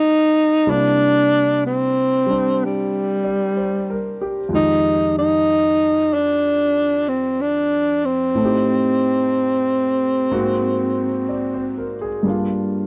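Wistful and melancholic, this slow swung jazz excerpt at 62 BPM in C minor sets a breathy, whispered tenor saxophone melody with vibrato and scooped notes over a warm concert grand piano whose deep bass and audible action noise sit up front in a dry, close 1970s-style small-room sound, the saxophone stopping at 11.9 s while the piano carries on to 12.9 s.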